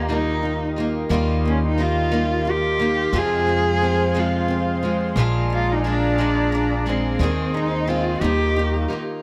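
This tender, swaying pop passage in a lilting 6/8 opens with every part at once: a bowed cello sings the melody up front, dark and woody with a single player's vibrato. Beneath it, an upright bass plays pizzicato with a woody, warm presence up front, while a double-tracked nylon-string guitar is fingerpicked with a small, intimate tone and the occasional finger squeak. A picked steel-string acoustic guitar adds arpeggios with an auditorium-like bloom, and a smooth analog pad holds sustained chords high above, its detuned sawtooth and sub-octave layers softened by a slow attack, long release and chorus. The harmony moves from Ebadd9 through Fm and Bb7 to Ab/Eb before settling back on Ebadd9, and a light small-room reverb keeps the whole ensemble close and gentle. Cut from a longer piece, the bass falls away at 8.8 seconds and the cello at 9.0 seconds, just before the guitars and pad end.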